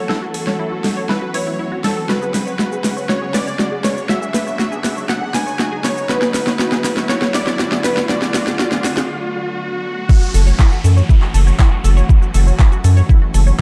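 An overdriven, knocking electronic kick drum lands at the drop at 10.1 seconds in this expansive, driving progressive house excerpt, with a round, deep analog bass following just after at 10.3 seconds, after a build-up where a punchy, detuned unison pluck carries the melody over a smooth supersaw second line, both with sidechain pumping and dub echo until 9.1 seconds, while bright, gritty bowed strings hold low-pass filtered chords, a tight sequenced synth runs chorused arpeggios in the background, a riser and downlifter sweep behind, and a big-room dance kit with a huge snare, handclaps, metallic hats, shaker and crash plays a fill up front, all in a dark production with light digital ambience.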